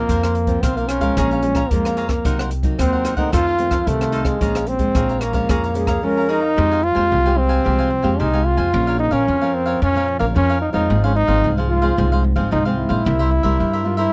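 Yearning yet lively, this excerpt from a longer samba and choro piece moves at 111 BPM in a straight 4/4, opening in Bb minor before shifting to F minor at 6.6 seconds. A bright, present trombone carries the melody up front in a jazz style, while a crisp, picked cavaquinho and a fingerpicked classical nylon-string guitar fill out the accompaniment. A woody upright bass played pizzicato anchors the low end, and an open jazz drum kit with a boomy kick, hi-hat and rim click drives the groove until it stops at 6.0 seconds. Just before the key change, a breathy, hollow jazz flute with vibrato and a soft attack adds a short second line from 5.8 seconds. The harmony moves through chords such as Bbm7, Cm7b5 and F7 before settling into Fmadd9 and closing on C7. The sound is dry and close, in the manner of a 1970s studio recording with little reverb.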